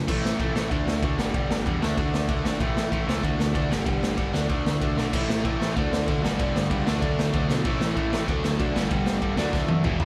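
A crunchy, bright overdriven guitar riff kicks off this upbeat, rowdy punk rock excerpt at a straight 190 BPM, joined almost at once by a growling overdriven bass in the background and an up-front, gritty garage drum kit with a boomy kick and dark cymbals, all cycling through A, D and G chords as a band playing live in one room with light reverb, while a second double-tracked guitar, heard only for a brief instant at the start, returns behind at 5.1 seconds and drum fills land at 5.0 and 9.5 seconds.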